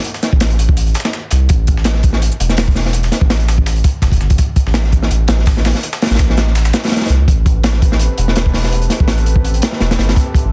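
A crunchy, saturated breakbeat kit sits up front in this atmospheric, frenetic drum and bass excerpt at 166 BPM in A minor, its tight kick, medium-tuned snare and hi-hat carrying a gritty, mid-forward character with a rolled-off top and a slight swing on the sixteenths. Beneath it, a quieter sampler-style kit of hi-hat, shaker and snare adds a compressed, tape-warm layer re-recorded in a small room, with high-pass filtering thinning its snare, percussion, hats and room sound until it drops out at 7.2 seconds. A soft dub sub bass, deep and round with a fast attack and tube saturation, holds the low end from E1 to D2 throughout. At 7.5 seconds a warbling, detuned pad fades in on sustained chords, its sawtooth-and-triangle tone made nostalgic and lo-fi by chorus and built-in reverb, arriving just after the harmony has moved from A5 to Am9. The whole cut keeps a small room ambience under a dense, heavily limited modern master.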